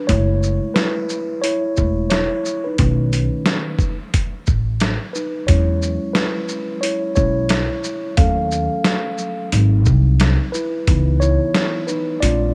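Mellow and smoky, this 89 BPM jazz-hop excerpt in C# minor swings through F#m7, B7, E6, D#m7b5, G#7 and C#m7 as a clean, mellow tine electric piano solos up front from 0.0 seconds, joined at 0.1 seconds by a woody pizzicato upright bass and a gritty, overdriven sampler-style drum kit with a thumpy kick, medium-tuned snare, hi-hat and shaker re-recorded in a small room, all under light reverb.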